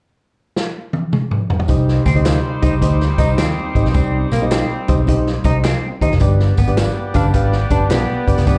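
Uptempo 1960s-style soul with a driving, passionate swing, heard as a live club gig through the venue's PA, opening with a drum fill on a vintage kit with a punchy kick and a rolled-off top before the band arrives at 1.7 seconds on a C minor chord that moves to G at 6.2 seconds. A dark, foam-muted picked bass sits beside a barky, reedy electric piano, while a distant horn section with light vibrato and slapback echo carries the second line and a tambourine with egg shaker and group handclaps stays in the background. At 2.1 seconds a slightly broken-up electric guitar through a small old amp adds a riff coloured by lush chorus and slapback echo.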